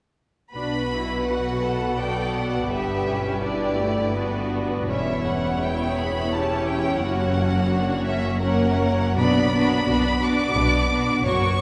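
Bathed in a long cathedral-like reverb from a church or concert hall, this fragment of a slow romantic movement for string orchestra unfolds in a yearning, solemn three-beat lilt with rubato and uneven beats. From 0.5 s, bowed sections enter almost together: a rich violin section sings the high melody over a second violin line, focused violas with vibrato fill the accompaniment, and lush, distant cellos join clear double basses in the bass. The harmony moves from B minor through G, C#m7b5/E and F# before returning to B minor at 9.2 s, and all the strings sustain until 11.6 s.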